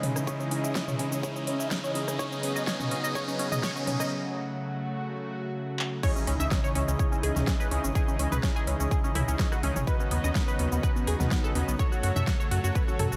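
This driving, emotional progressive house piece at 125 BPM in C# minor opens on a build-up. A riser sits over a lush, warbling vintage pad, a tight, mellow sawtooth arpeggio under a filter sweep, soft detuned supersaw stabs, and a round, deep analog bass, with the pad, arpeggio, supersaw and bass all pumping against the punchy, up-front overdriven kick that arrives at 0.3 seconds. Big-room drums bring a huge snare, metallic hats, claps and cabasa, while tape-hued electronic toms and congas stay in the background; after a brief break from 4.1 seconds and a drum fill, the drop lands at 6.0 seconds with an impact as the chords cycle through C#madd9, Badd9/D# and F#m in light reverb.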